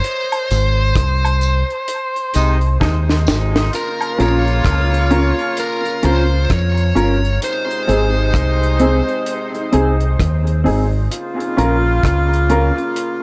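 A biting, overdriven lead guitar melody and a dry, dark reggae drum kit with a high-tuned snare open this excerpt of meditative Bb minor dub reggae at 65 BPM, joined by echoing woodblock and tambourine, a round, up-front fingered bass and a punchy horn section before a mellow chorused electric guitar and a woody, slightly detuned upright piano with echoed stabs enter at 4.2 s over a deep, swung groove in light reverb.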